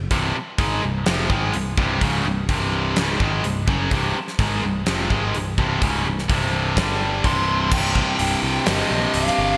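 A straight 4/4 beat from a gated 80s drum kit with a fat snare and punchy kick drives this menacing, aggressive hard rock excerpt, where two tight distorted guitars grind out the riff over a growly picked electric bass and a smooth, dark overdriven lead guitar enters in its high register at 7.2 s, all set in a lush hall with bright 1980s-style digital production.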